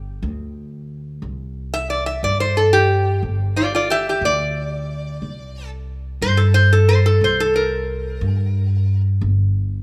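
A rough home demo sound with small-room reverb frames this rollicking, laid-back acoustic country blues duo, cut from a longer piece and swinging in 4/4 at 120 BPM over G5 and C5 power-chord changes. A pizzicato upright bass with steel strings sits up front from 0.0 seconds, woody, growly and thumpy, before a metal-body resonator slide guitar enters at 1.7 seconds. Played with fingerpicks, the guitar is metallic and nasal, carrying the melody up front until 9.0 seconds.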